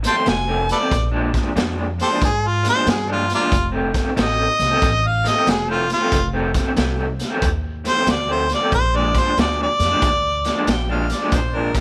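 A lightly reverberant studio room frames this swaggering, rollicking electric blues shuffle at 92 BPM, cut from a longer piece, where a slightly broken-up, lo-fi electric guitar through a small old amp plays a tremolo-washed riff over woody pizzicato upright bass and a gritty, punchy raw garage drum kit in a pumping small room, the harmony moving between F7 and Bb7 as a clear, up-front harmonica with overdrive and slapback echo leads with tongue slaps, scooped notes and light vibrato before a distant, roomy second harmonica with a soft attack enters at 10.7 s.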